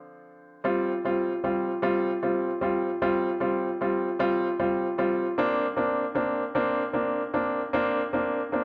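A clear, polished concert grand piano sits up front in a wet recital hall, its deep bass and short sustain ringing into a reverb that lingers for about 1.7 seconds. This brief pop fragment, cut from a longer piece, moves at a slow 51 beats per minute in a straight 6/8 lilt, with a romantic, tender mood. The piano plays solo for the full 8.6 seconds, staying in a compact range from D3 to F4. The harmony opens on Dm7, settles into Fsus2 at 0.7 seconds, and shifts to Bbadd9 at 5.4 seconds, giving the passage an open-ended color. The present, up-front piano tone against the spacious hall makes the moment feel both close and reflective.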